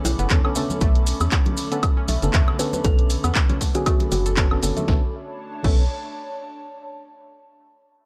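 Hypnotic and warm, this short cut from a longer deep house track sits at 118 BPM in 4/4 with a 16th-note swing, resting on a Bm9 chord in B minor. A dry, punchy electronic kick sits up front from 0.3 s. Alongside it, an analog drum machine supplies a punchy snare, handclaps, hi-hat, crash cymbal and woodblock, while bright congas and grainy maracas add a live acoustic layer in the background. A dark, hollow FM bass with an organ-like bite pumps under the sidechain. Percussive organ stabs with chorus and delay punctuate the groove. A woody kalimba carries the melody through dub echo, and a round, detuned analog pluck with a filter sweep and dub echo plays arpeggios deeper in the mix. A warbling, lo-fi tape-like pad with 12-bit sampler grit and a soft, breathy pad fill out the nostalgic atmosphere, and at 4.9 s the drop gives way to a sparser section where the breathy pad lingers until 6.9 s.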